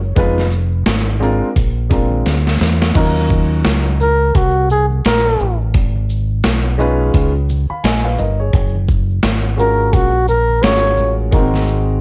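Heard through light reverb on a home cassette recording, this cool, smoky jazz-hop excerpt moves at 86 BPM in 4/4 with a swung 16th-note feel in Eb dorian. A breathy, whispered flugelhorn carries the solo melody up front, its soft attack, vibrato and intimate jazz phrasing colored by cassette tape, until it stops at 11.2 s. Beneath it, a deep dub fingered electric bass sits dark and round, direct and amped, while a warm grand piano enters at 0.2 s with tape-tinged chords moving from Fm7b5 and Bb7 into Ebm7, Abm, Db7, Gbmaj7 and Ab7. The boom bap sampler-style kit is compressed, pitched down and gritty, with a thumpy kick, a high-tuned snare, hi-hat, shaker and crash re-recorded in a large room, plus a drum fill at 2.3 s. A tube shaker and congas add a very quiet acoustic layer from a small room.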